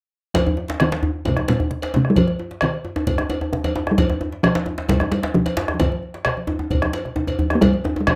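A straight 4/4 pulse at 132 BPM drives this powerful West African drum ensemble piece, cut from a longer performance and set in Eb major pentatonic. The talking drum carries the melody between Bb2 and Bb3, sitting close, dry and up front with a short ring, while a round, vintage-sounding bombo with a band-limited tone sits up front as well. Two djembes share the groove: one is warm, deep and up front in a live room, the other medium-tuned and very quiet in a small room. Bright congas with a thin skin and hard hands stay in the background, and a metallic cowbell rings from a live room. A drum fill from 7.0 to 7.6 seconds adds a final push before the ensemble stops around 8.2 seconds, all within a moderate studio reverb and a rough home-demo mix.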